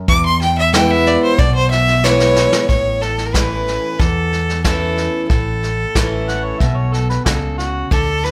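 Lightly reverberant, this sunny, down-home honky-tonk and classic country excerpt at 92 BPM in A major opens with a clear, up-front bowed fiddle soloing over bright picked steel-string acoustic guitar, a round, dark fretless electric bass with ensemble chorus, and a brushed vintage drum kit with punchy kick and rolled-off top, whose fill leads from E to A at 2.7 s, before a gritty, overdriven harmonica with tongue slaps and scooped notes adds a second line at 6.3 s.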